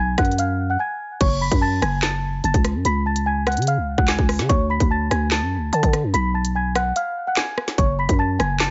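Lightly reverberant and dulled at the top, this menacing, cold drill excerpt rides a half-time feel over a minor progression. A close-miked small celesta carries a bell-like, delicate melody up front, while a buzzy, growling 808-style bass with a fast attack sits beneath it. From 0.2 seconds a drill drum kit adds a hard-clipped kick, woody snare, crisp hi-hats, handclaps, rim clicks and crash cymbal, dropping into breaks at 0.8 and 7.0 seconds.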